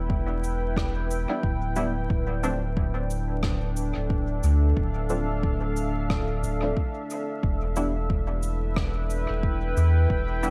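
An echo-heavy mix with vinyl crackle and little reverb sets the deep, hazy mood of this ambient dub fragment, where a round sine sub bass sits up front beneath a tape-warm, layered electronic kick. A dark, detuned sawtooth pad holds slow-attack chorused chords. From 0.4 s, big-room cabasa and rim click scatter through dub echo, and at 1.3 s muted, filter-swept chord stabs enter with lush chorus and echo as the harmony moves from Em7 to Dm7 and back to Em7.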